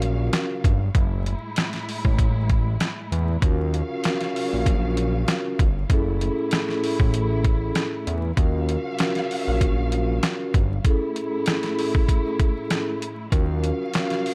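Up front, a gritty, compressed boom-bap drum kit with a thumpy kick, a medium-tuned snare and hi-hat sets a tough, reflective groove at 97 BPM in 4/4, swung on the sixteenths and pitched down for a sampler-style feel. Beneath it, a fat analog bass with a nasal, detuned sawtooth-and-square-wave tone sits just as close, its fast attack giving way to sustained notes until 13.7 seconds. A vibraphone played with soft mallets adds mellow, ringing accompaniment with a slow motor vibrato, while a distant, lush string section holds bowed chords with expressive vibrato and portamento. The harmony circles between Ebm9 and Gbm9 before turning to Amaj7 near 10.8 seconds and settling back on Ebm9. The production is dark and dry, dusted with vinyl crackle, and this short passage is cut from a longer piece.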